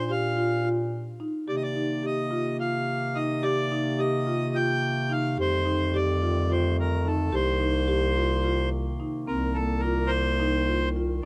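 Pensive yet urgent, this short cut from a longer piece of contemporary chamber music moves in an uneven 7/8 with a straight feel. A reedy, full accordion carries the melody up front while a mellow bass clarinet holds the bass line and a woody, band-limited marimba with rosewood bars spins arpeggios, with a section of woodwinds entering at 1.5 seconds to lay down sustained chords with light vibrato. Close, detailed microphones and light reverb keep the sound intimate as the harmony moves from Cm7 to F13 and back before a new section arrives at 9.3 seconds.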